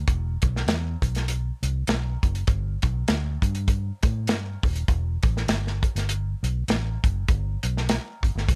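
Driving and urgent, this short cut from a longer uptempo 1960s-style soul piece moves at 100 BPM in E minor with a swung eighth-note feel. A dark, round, foam-muted electric bass, fingered and amped, sits up front from the start, ranging from D#1 to A2. The drum kit enters at 0.1 seconds with hi-hat, a tight kick and a medium-tuned snare, sounding warm with a rolled-off top and a pumping room, all under a light reverb.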